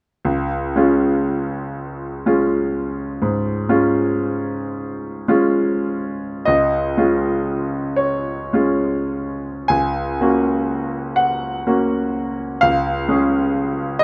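The rhythm flows in 12/8, with the dotted-quarter pulse drifting between 31 and 44 BPM under a free, rubato feel. This is a romantic classical nocturne for solo grand piano in Db major, dreamy and tender in mood, heard as a short fragment of a longer piece. The piano plays alone from 0.2 to 14.0 seconds, spanning Db2 to Ab5, and its tone is brilliant yet smooth, with a vintage character and an up-front presence. A light reverb gives the instrument a gentle sense of space. The harmony rests on Db, moves to Gb over a Db bass at 9.7 seconds, and returns home to Db at 12.6 seconds as the second section unfolds.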